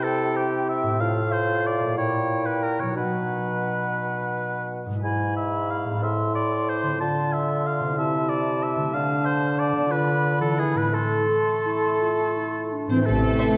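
Classical orchestral ballroom waltz in 3/4, dark and sweeping, moving at a rubato 158-203 BPM and settling into A minor from 5.0 s. An up-front oboe carries the most prominent woodwind line, while a hollow, airy flute, a background clarinet and a distant, roomy bassoon accompany it over ringing, fingerpicked harp arpeggios. At 12.9 s, just before the cut, bright violins, mellow French horn chords and lush cellos enter, joined for a moment by biting double basses, a smooth background violin melody and very quiet violas, all in a dark, wet scoring-stage reverb.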